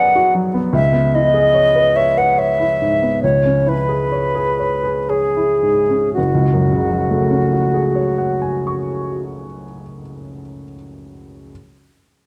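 Classical impressionist duo in F# minor and 3/4, hazy and mysterious, moving with rubato at 54-77 BPM and slowing through its opening 6.2 seconds, as an airy, straight-toned silver concert flute with a crisp attack sings the melody until 9.2 seconds over the warm, present accompaniment of a baby grand piano that rings on to 11.5 seconds, all captured by close, detailed microphones in a moderate recital hall reverb in this excerpt cut from a longer piece.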